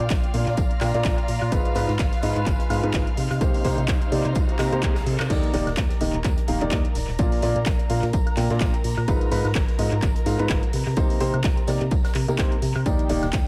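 A swung groove from an overdriven, up-front electronic kick, a tape-warm drum machine with handclaps, hi-hat, woodblock and crash in echoing delay, and a very quiet, airy jazz kit with a high-tuned snare and tambourine drives this joyful, euphoric piano house fragment, where a clear, woody upright piano riff and a hollow, organ-like FM bass pump under sidechain beneath warm background violins with vibrato, veiled muted strings that drop out at 5.3 seconds, and a faint riser from 3.1 seconds leading into a drum fill and band accent.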